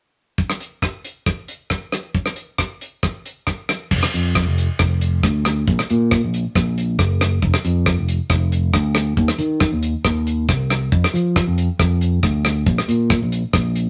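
A straight 4/4 groove at 137 BPM opens this sunny, carefree highlife guitar band excerpt, with a damped 70s drum kit playing alone from 0.4 seconds, its dry sound and tight kick set up front among crash cymbal, hi-hat and rim click. At 3.9 seconds a fingered electric bass enters, bright and punchy, roaming from F1 to F3 and sitting forward beside the drums until the cut at 13.9 seconds. A moderate studio reverb gives the room a compact feel.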